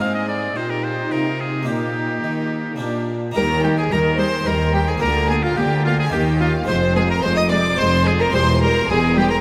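A bright, up-front oboe carries the melody alongside a rich chamber violin section in the upper register, while a second violin section with expressive vibrato plays a supporting line, a round-toned plucked harpsichord and focused violas sit in the background, and smooth cellos hold the bass, joined at 3.4 s by an even double bass section, all in a lively, brilliant baroque-style concerto movement in Eb major at 108 BPM in 3/4, steeped in a vast, echoing cathedral reverb.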